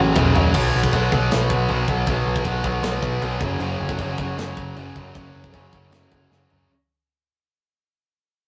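A straight 4/4 pulse at 156 BPM drives this dark, aggressive heavy metal fragment, tuned slightly flat to A4 = 437 Hz, with a tight acoustic kit of kick, medium-tuned snare, toms, crash and china that enters at 0.2 s and throws in fills at the start and again near 6.3 s. Two bright, high-gain distorted guitars pick the riff over F#m, B5 and F#5 chords, one up front and one tucked behind, while an overdriven, growling picked bass sits prominently beneath them. The whole piece fades out from 0.5 s, and the rough rehearsal-room sound carries moderate reverb, tube saturation and vinyl crackle.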